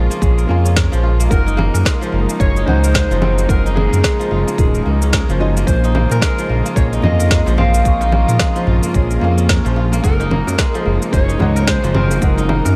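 Set in a small room with light reverb, this meditative, mystical organic downtempo excerpt at 110 BPM in swung 4/4 pairs a slightly broken-up electric slide guitar melody with bright, fingerpicked kora arpeggios, both trailed by delay and shimmer reverb, over a boxy felt-muted upright piano that pumps to the sidechain, veiled con sordino strings sustaining Bbm7 and Gb69 chords, an up-front smooth synth bass, a deep electronic kick and a woody electronic snare with cabasa and congas, while a crisp, very quiet darbuka joins at 5.8 s.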